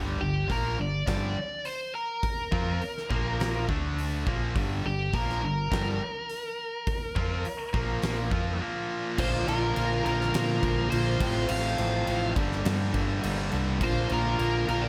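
Hard rock in G minor at 104 BPM, this menacing, driving excerpt is cut from a longer piece and moves in a straight 4/4. Two brilliant-toned rhythm guitars, one overdriven and one tight and distorted, pick a riff in the background from the start, underpinned by a dark, round, punchy fingered electric bass. A nasal lead guitar with a parked wah sits up front carrying the melody, its overdriven tone given a slapback echo, while a huge arena drum kit with a fat snare, punchy kick, hi-hat and crash cymbal drives the song from 0.5 seconds. After a brief break, the second section arrives at 9.2 seconds, bringing in a smooth, shadowy lead guitar with overdrive and slapback echo on a second line, plus a third distorted rhythm guitar, double-tracked and compressed, as the chords move from Bb through F/A back to Gm. A moderate large studio reverb gives the parts a roomy sense of space.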